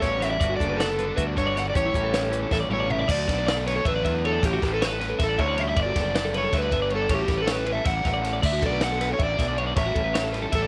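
Math rock with a midwest emo tint, this wistful, intricate excerpt moves at a brisk 314 BPM in eighths, counted in 7/8 with a straight feel in D major. Up front, an overdriven semi-hollow guitar carries the melody in a dark, hollow-body tone touched by slapback echo, while a twangy, compressed twelve-string electric guitar spins bright, clean arpeggios alongside it. Beneath them sit a double-tracked, crunchy overdriven guitar riff and a fuzz-soaked fingered bass that is round, punchy and prominent in the mix. A clean semi-hollow electric guitar adds background accompaniment only until 3.1 s, as a drum fill from the compact cocktail kit, with its high-tuned snare, tight kick and dark cymbals, runs from 2.5 s and ushers in the next section. Chords such as Gmaj7, A13 and D6 give the harmony a yearning color, all set in light reverb and small room ambience.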